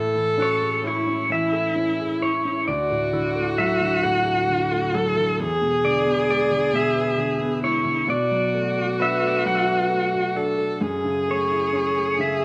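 A bright, twangy pedal steel guitar carries the melody in this intimate, nostalgic acoustic folk-pop ballad, entering at 0.4 s with slide and volume swells in a slow 6/8 at 44 BPM in A major. A single bowed viola sings a rich, expressive second line with vibrato and portamento, while a woody upright piano with audible action noise and long sustain supplies the accompaniment. A ringing concert harp adds fingerpicked arpeggios in the background from 0.4 to 11.7 s, all under light reverb as the chords drift from Amaj7 through Dadd9, E7 and Bm7 to F#m7.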